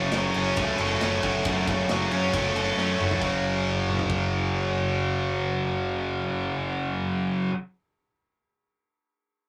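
A rough, tube-saturated rehearsal-room sound with a wet booth ambience frames this epic, aggressive heavy metal fragment in F# minor at 137 BPM, where a bright overdriven electric guitar and a scooped high-gain guitar drive riffs up front over a growling picked bass, while a gritty, rolled-off drum kit of kick, snare, toms, crash and ride sits in the background until 4.2 seconds, marking the change from F#m to F#5 at 3.2 seconds with a fill.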